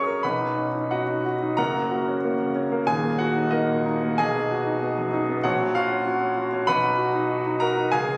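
This classical virtuoso piano study in F# major has a brilliant, heroic mood. It moves in 2/4 at a rubato 87-98 BPM, and its harmony opens on B at 0.2 seconds before passing through F#, D#m, B and F#/A# chords and returning to B. The concert grand plays solo across the whole 8.2-second fragment, spanning D#1 to D#6 with an intimate, up-front presence, deep bass, long sustain and audible action noise, set in a recital hall's reverb captured on a phone in the room.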